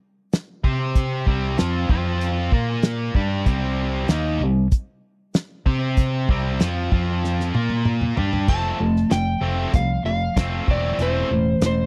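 A straight 96 BPM pulse from a damped 1970s drum kit with a fat snare, tight kick and dark cymbals drives this swaggering, sunny classic rock excerpt in C major, where a bright, double-tracked overdriven guitar riff plays up front alongside a round, fingered electric bass through a dry, close small-room sound, a drum fill rolls in at 7.2 seconds, and a dusky, slightly broken-up slide guitar picked with fingerpicks takes the melody from 8.5 seconds.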